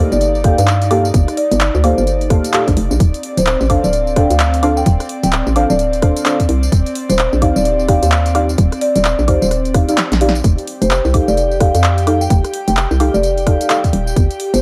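Bouncy and soulful, this two-step UK garage excerpt swings at 129 BPM through Gm9, Dm7, Ebmaj9 and F9 chords. An airy, breathy pad with sampler grit, chorus and sidechain pumping sits beneath deep, dark chord stabs treated with chorus, phaser and analog delay, while a hollow, knocking FM bass stays up front and a marimba played with medium mallets carries the melody through its own delay. A tight, layered electronic kick anchors an overdriven analog drum machine of punchy snare, handclaps, hi-hat, rim click, tambourine and woodblock, and the kick drops out for a drum fill from 10.0 to 10.4 seconds, all in a dry, gritty hardware sound with digital ambience.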